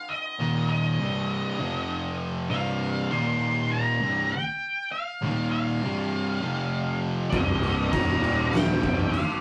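An up-front octave-fuzz lead guitar carries a dark, distorted melody from the opening in this ominous, sludgy stoner and doom metal excerpt in C minor at 99 BPM, riding over a 4/4 bed of riffs from a bright, double-tracked overdriven guitar and two thick fuzz guitars, one dark in the background and one warm and forward. At 7.3 s a growly, punchy fuzz bass and an oversized low-tuned drum kit join, the kit saturated and gritty with a boomy kick, fat snare and dark crash cymbals in a bright stone room. The rough rehearsal-room sound carries tube saturation and moderate reverb, with chords moving among Cm, Eb5, F5 and C5.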